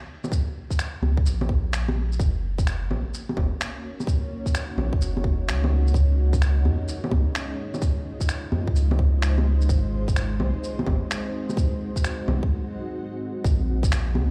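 Heard through a big sound system in a bare room with large studio reverb, this melancholic, wistful future garage excerpt has a swung 16th feel, with muffled, compressed electronic bongos, shaker and finger snaps sitting low beneath a tight, layered electronic kick drum up front, a round sine sub bass with sidechain pumping from 1.0 s, and a cloudy, detuned granular pad with a slow attack and built-in reverb drifting in at 3.1 s over chords moving from Gb6 through Dbmaj9 and Ab7, before a brief break at 12.5 s.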